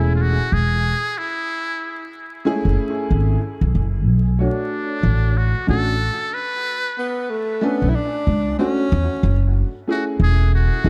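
A buzzy, metal-muted trumpet with vibrato carries the melody in this cool, smoky, swung hip hop fragment, trailed by dub echo that also hangs on a worn, slightly detuned upright piano's long-sustained minor-ninth chords, while a thumpy, woody pizzicato upright bass sits up front and a breathy, subtoned tenor saxophone slips in with scooped notes from 7.0 to 9.7 seconds, all wrapped in an echo-heavy room and vinyl crackle.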